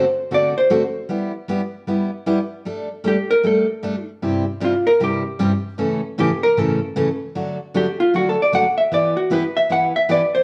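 A dark, clean vintage hollow-body electric guitar carries a swinging, down-home country melody up front, soloing over a picked steel-string dreadnought acoustic with fresh strings that picks out a chord progression from D7 and G6 through Gsus2, C/G, A, D and Em, the two guitars played live together in a stone room with moderate reverb and captured with a cassette-tape character in this short cut from a longer piece.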